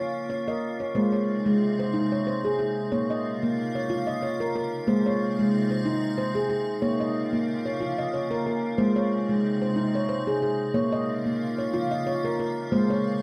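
A close, damp booth sound holds this gentle, meditative world piece, a 13-second excerpt in 3/4 at 92 BPM with a light swing on the sixteenths. Up front, a dark, ringing nitrided-steel handpan plays fingertip arpeggios throughout. Beneath it, a bright, crystalline, airy glass pad, shimmering with chorus and built-in reverb, sustains chords that alternate between Bbm and Ab.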